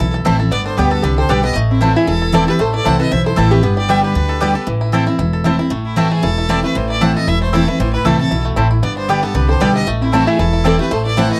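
Dry and close, with the intimate, unadorned feel of a 1970s studio session, this short cut from a longer bluegrass piece moves at a driving 231 BPM in 4/4 with a light swing on the eighth notes. Set in A minor and tuned a touch sharp at A4 = 444 Hz, its haunting mood comes from a simple cycle between A minor and G. A single bowed fiddle carries the melody with a clear, biting tone and light vibrato, alongside a twangy, percussive fingerpicked banjo. A mellow, nasal lap resonator guitar played with a slide adds a metallic second line, drops out at 4.6 seconds and returns at 9.3 seconds. Underneath, a full-bodied jumbo steel-string acoustic guitar with fresh strings supplies bright picked accompaniment, a double-strung mandolin adds woody stabs, and an upright bass sits up front with a dark pizzicato pulse.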